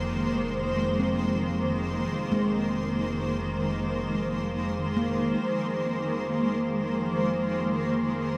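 Ambient fragment in F minor at 68 BPM in 3/4, serene and reflective, where an up-front granular cloud pad holds blurred, evolving sustained chords from Eb3 to C5 through shimmer reverb, a very quiet, close-miked handpan rings meditative fingertip arpeggios between Ab3 and C4, a clear chamber double bass section bows an earthy F1 with light vibrato, and a very quiet organ-like drone sits on F3 with ring modulation and ensemble chorus, all four sounding throughout the 8.4 seconds inside a huge wet reverb that opens on Bbsus2/F and shifts to a new section at 5.4 seconds.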